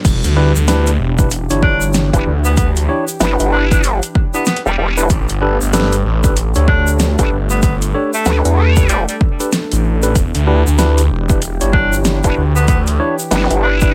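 This gritty, playful glitch hop excerpt opens straight into a drop at 95 BPM, with a swung 16th-note feel in E dorian. A punchy, overdriven electronic kick and a thick, swirling detuned saw bass with phaser sit up front from the start, over a mellow, nostalgic pad of warbling sustained chords that pumps quietly in the background. A pop drum kit with a fat snare, metallic hats, rim clicks and crashes joins, along with a grainy, bright egg shaker recorded close and dry. A clean tine electric piano adds tape-echoed stabs, and at 1.6 seconds a clear tenor saxophone takes the melody, distant and roomy, with light vibrato and vintage 12-bit sampler grit. At 2.1 seconds a nasal, resonant vowel-sweep wobble bass arrives, and the saw bass drops out at 13.0 seconds, while the harmony moves from Em7 to A9sus4 and back over a constant bed of vinyl crackle.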